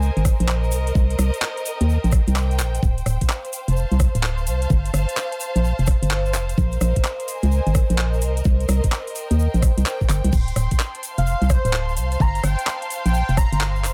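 A hollow, organ-like FM bass sits up front in this skippy, late-night two-step garage excerpt, driven by a knocking kick and a tape-warm garage kit with metallic hats, claps and rim clicks, while a grainy tube shaker echoes in the background, biting violins and lush, distant symphonic strings pump beneath, and an airy, detuned lead with chorus and tape echo drifts in at 11.2 seconds over an echo-heavy digital ambience.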